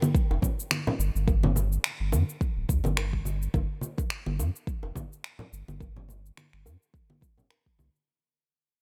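Meditative and earthy, this short organic downtempo fragment, cut from a longer piece, moves with a gentle swing on the sixteenths in 4/4. Electronic congas, shaker and finger snaps open at 0.0 seconds, layered and produced and set up front, joined almost at once by a deep, up-front electronic kick drum. From 0.3 seconds a warm sub bass settles in, a round, sine-like tone with a fast attack and sustained notes, given a touch of tube saturation and sitting prominently in the mix. Acoustic bongos and congas arrive at the same moment, bright and compressed with a saturated edge, played with soft hands a little further back. A small room ambience surrounds the parts, and the whole fragment fades out across its 8.1 seconds.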